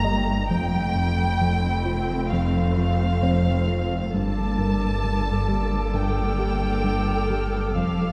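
A hall-like reverb with a two-second tail envelops this short cut from a longer suspense film score, an ominous, uneasy passage in G minor at a slow 66 BPM in straight 4/4. A violin section carries the melody high between F5 and Bb5 with focused, vibrato-laden bowing, while a second, softer violin section hangs even higher in the background as a soft-attacked, expressive texture. Beneath them, violas fill the middle with expressive portamento, while smooth, even cellos and a very quiet, soft-attacked double bass section anchor the low end with lush sustain. A fat, detuned analog synth bass with a saturated filter pluck runs a riff through the background, while a sine-and-triangle sub bass drone reaches down to F1. A dark, boxy grand piano adds mellow, lingering texture until 7.8 seconds, as the harmony shifts from F at 0.5 seconds to Gmadd9 at 4.1 seconds.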